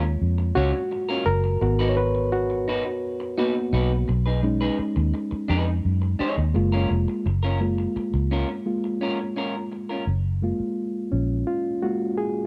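This soul excerpt moves at a relaxed 85 BPM in a straight 4/4, smooth and warm in mood, settled in F# major. A reedy, clean electric piano sits up front and carries a solo through all three sections, moving over F#maj7, G#m7 and B6 before returning to F#maj7. Beneath it, a vintage fingered electric bass, foam-muted and round with a dark, amped tone, holds the low end prominently until 11.4 seconds. A twangy, bright electric guitar through a small old amp plays a picked, slightly broken-up riff before dropping out at 10.0 seconds. The piano carries on to the close at 12.5 seconds. The sound is dry and close, with little reverb, in the manner of a 1970s studio recording.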